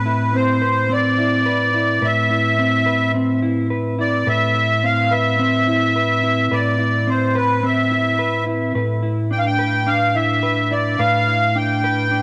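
A reedy, sweet accordion melody and a dark, clean electric guitar playing fingered arpeggios open this melancholic, hazy dream pop excerpt in A minor, moving at 107 BPM in a straight 4/4. Both sit up front: the accordion with light tremolo tuning and analog delay, the compressed guitar with lush chorus and analog delay, as the harmony rests on Amadd9 before shifting to G13/A at 8.8 seconds. Light reverb and small-room ambience frame a dry, gritty hardware recording.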